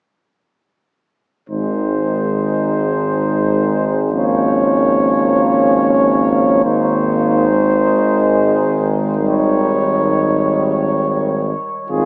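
The recording sounds as if it comes through a small speaker in a vast, echoing space, with a huge, wet reverb hanging around every note. This hymn-like classical piece for brass band, cut from a longer work, moves in a lyrical 3/4 at 61 to 73 BPM with a loose, rubato feel in A-flat major. All five parts enter together at 1.5 seconds and play through to 12.1 seconds. Up front, a mellow cornet carries the melody with a soft attack, light vibrato and a smooth top, and a vintage-toned tuba holds a steady bass, also in front. A warm French horn section sings a second line in the background, beside a bright, close-miked trombone section in the accompaniment, while a single distant, roomy trombone adds a very quiet, clear accompanying voice. The harmony moves from Ab to Bbm7/Ab, back to Ab, and on to Eb7/Ab over the held bass.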